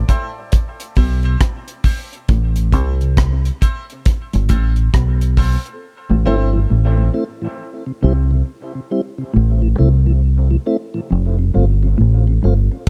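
An echo-heavy, small-room mix opens this hypnotic, spacious dub reggae excerpt in A minor at 68 BPM with a swung feel, where a punchy, dark fingered electric bass sits up front over a dry reggae kit of tight kick, hi-hat and rim click. Brilliant, worn grand-piano stabs trail dub echo, and a clean hollow-body guitar riff murmurs in the background through Am, C and F. The drums drop away at 5.8 seconds and the piano by 6.5 seconds, while a mellow tonewheel organ with key click and a slow rotary speaker enters at 6.1 seconds to fill in the accompaniment.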